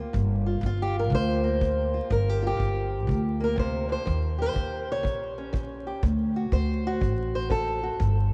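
An old ladder-braced acoustic guitar, fingerpicked and up front with a dark, boxy tone from old strings, opens this smoky, mournful excerpt of acoustic country blues in G minor, moving at 122 BPM with a swung 4/4 feel. A growly pizzicato upright bass on steel strings sits just as close, while a tight kick drum played with brushes enters at 0.1 seconds. The harmony moves from Gm7 to Eb7 at 4.1 seconds and D7 at 6.0, all within a vast, echoing cathedral reverb dusted with vinyl crackle.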